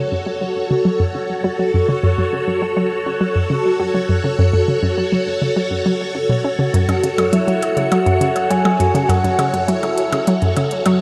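Hypnotic and cosmic, this short cut from a longer piece of sequencer-driven ambient space music holds on a single F# minor chord, with a round, detuned analog pluck riff up front beside the swirling, vintage chords of a phased string machine, both running from the start to 11.0 s, while a filter sweep moves across the synth arpeggio sound throughout. Clicky, overdriven electronic hi-hats and percussion blips enter at 6.7 s, and a soft, dark octave-layered synth lead with vibrato sings a brief melody from 7.3 to 10.6 s. A huge, wet reverb with an 8.3-second tail places the whole piece in a vast, echoing space.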